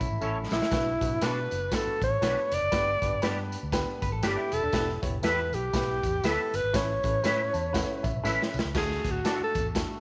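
Uptempo 1960s-style soul at 120 BPM in D major, uplifting and joyful, with a breathy, close-miked alto saxophone carrying the vibrato-laden melody through slapback echo and breaking into a solo at 8.7 seconds, over a gritty, saturated garage drum kit with a boomy kick, a round foam-muted fingered bass, a mellow, woody upright piano that adds a fill at 7.2 seconds, twangy, clean guitar stabs, short dark, slightly broken-up riffs from a second guitar through a small old amp, and a jingly tambourine sitting in the background of a light studio ambience.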